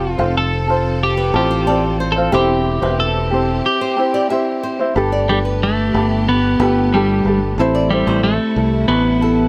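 Acoustic pop in G mixolydian at 91 BPM, this sunny, heartfelt excerpt from a longer piece is led by a clean, compressed, picked twelve-string electric guitar melody up front, with a light, thumb-plucked ukulele and a growly, direct fingered electric bass close beside it. A flamenco guitar enters at 0.2 seconds with bright, fresh-stringed fingerpicked arpeggios, while a lush, bowed string section with vibrato, a focused sound and a smooth top holds sustained chords in the background. The harmony moves from F to C/E, then shifts at 5.0 seconds to Gadd9 and Am, set in a light reverb.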